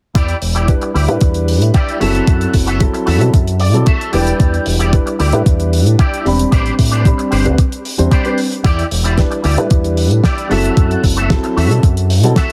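A heavily compressed, radio-style mix with multiband compression, light reverb and small room ambience frames this nu-disco clip, cut from a longer piece, in a sensual, cosmic mood. Up front, an overdriven, thumpy electronic kick drives the groove alongside a damped 70s drum kit with a dry, fat snare and hi-hat. A fingered electric bass through an envelope filter carries the low end with a direct, up-front tone. A picked electric guitar riff, bright and twangy through its own envelope filter, is coloured by ensemble chorus, vintage 12-bit sampler grit and slapback echo, and a clean guitar fill appears from 3.3 to 4.4 seconds. From 0.7 seconds a dark, mellow baby grand piano adds accompaniment, worn and boxy with audible action noise, long sustain, sampler grit and slapback echo, over a progression that cycles through Em7, F#m7b5 and Am11.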